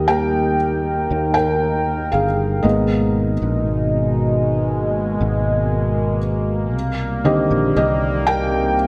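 A felt-muted upright piano, soft and intimate with audible action noise, carries a featured part from the opening of this hopeful, heartfelt pop fragment at 59 BPM in 4/4. Beneath it, a detuned sawtooth pad with a slow attack and a filter swell sustains chords through chorus and phaser, and a growly fretless electric bass with ensemble chorus holds the low end. The harmony moves from Eb to Abmadd9 at 2.6 seconds and Cmadd9 at 6.7 seconds, all bathed in a lush 2.4-second hall reverb.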